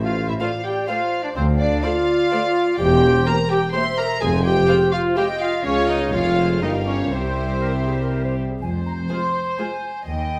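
Almost at once, a full orchestra opens this playful, whimsical film cue in a lilting triple metre. Violins carry the melody with a soft, floating sul tasto tone, over a mellow cor anglais with a vintage colour and an airy flute section. Distant French horns hold sustained chords. Underneath, a clear tuba and a dark, intimate double bass section share the bass line with close, bowed cellos, while a second violin line and a background viola section enter just after the start to fill in the middle. A solo clarinet adds a brief second line at 7.6 seconds, just before the music turns to a new section on F minor at 8.6 seconds, where the horns, cor anglais and tuba have dropped out. A wet stone-room reverb gives the magical, mischievous mood a roomy glow, though this is only a short cut from a longer piece.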